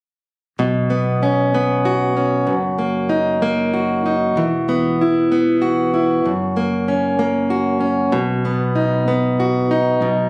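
Heartfelt and tender, this short excerpt from a longer six-eight pop ballad moves at an unhurried 64 BPM in B major, tuned slightly high to A4 = 444 Hz. A fingerpicked, plugged-in steel-string acoustic guitar sits up front, its jumbo body giving a full-bodied, warm tone as it carries the accompaniment from F#2 to F#4. Beneath it, a fingered electric bass stays in the background with a direct, amped sound, holding the low end between E1 and B1. Both parts enter at 0.6 s and play through to 10.3 s over a gentle progression of Bsus2, F#6, Esus2 and F#, settling on B. The whole passage sounds as if captured on a phone in the room, with a wet, lingering recital-hall studio reverb of about 1.4 s wrapping the instruments in space.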